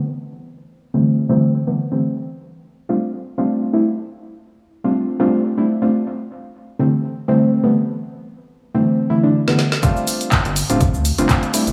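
Riding a 123 BPM 4/4 pulse with a gentle 16th-note swing, this soulful deep house excerpt opens with up-front, soft, decaying chord stabs on D9sus4 and G9sus4 that pump under sidechain and trail tape echo through a long filter sweep. At 9.5 s a drum fill from a kit of woody snare, handclaps, shaker and dark hats tips into a drop at 9.8 s, where a punchy electronic kick and a rubbery, nasal square-wave bass join in, all bathed in a wet echo-chamber reverb.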